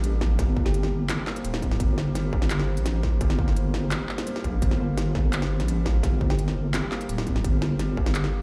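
A half-time groove in 4/4 drives this spacious, cinematic slice of drum and bass, cut from a longer piece. An electronic kick with a distorted, tape-warm sound enters at 0.2 seconds, and an industrial kit adds a clanging snare, crisp hi-hats and handclaps, both re-recorded in a small room. Up front, a deep, soft wobble bass built from detuned square and sine tones sits low and compressed with chorus. A felt-muted upright piano spins mellow, intimate arpeggios through a digital delay, while a dark analog pad holds a moody, evolving Gmadd9 chord in the background, its chorus-tinted sawtooth body pumping with sidechain. A very quiet, tine-like synth pluck with a round FM tone touches a single note twice, first at 0.7 seconds and again at 6.3 seconds, and a large studio reverb, as if played on a big sound system in a bare room, surrounds the whole mix.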